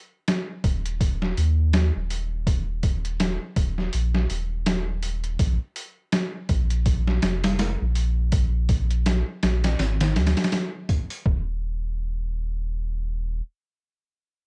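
A dry, up-front trip hop excerpt at 82 BPM with a 16th-note swing, where a hypnotic, melancholic groove pairs a muffled, pitched-down sampler-style drum kit, its thumpy kick, snare and hi-hat roughened by overdrive and 12-bit grit from 0.3 to 11.4 s, with a deep, round dub sub bass spanning Eb1 to Eb2 that enters at 0.6 s and carries on by itself after the drums drop out, until 13.4 s.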